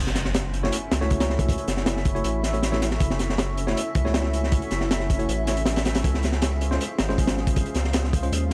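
Atmospheric and raw, this drum and bass excerpt at 158 BPM opens on a very quiet electronic impact over a blurred, granular cloud pad and a deep, tube-saturated sine sub bass, with a crunchy breakbeat kit of punchy kick, high-tuned snare and hi-hat arriving at 0.1 seconds, up front with a dark, rolled-off top. From 0.6 seconds a worn, slightly out-of-tune tine electric piano adds stabs with overdrive, 12-bit sampler grit and dub echo, while the harmony moves from F#m7 to C#maj7 at 6.0 seconds. The whole excerpt has a dry, gritty hardware feel in a small room.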